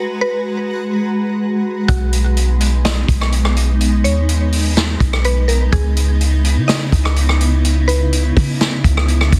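Spacious and hazy, this short cut from a longer atmospheric cloud-rap track drifts along with a half-time feel. A granular cloud pad opens the piece with sustained, blurred chords that slowly evolve through minor-ninth and sixth harmonies, bathed in its own reverb. Almost immediately, a mallet-like synth pluck carries the melody with a woody, round, percussive tone, treated with chorus, a low-pass filter and digital delay. At 1.9 seconds the clean 808-style bass arrives, deep and boomy with a sine-like body that sits up front in the mix. A vintage acoustic drum kit enters at the same moment, with a punchy kick, a medium-tuned snare, rim clicks and hi-hat, all carrying a mid-forward, rolled-off character. The overall sound is dense and heavily limited, with a studio reverb that adds to the cloudy atmosphere.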